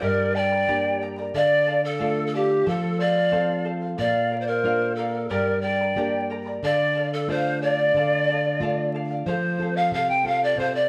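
Melancholic and wistful, this short Andean folk excerpt moves at 91 BPM in a straight 2/4 in D minor, with a breathy, reedy bamboo pan flute carrying the melody up front with vibrato and a soft, chiffy attack while a hollow, airy cane quena traces a second line alongside fingerpicked accompaniment. A shimmering charango with double strings and a classical nylon-string guitar fill out the harmony, all four parts playing throughout as the chords cycle from Gm through Dm, F and Bb before a brief new section arrives at 9.3 seconds. The band sounds live in one stone room, its reverb wet, with vinyl crackle beneath.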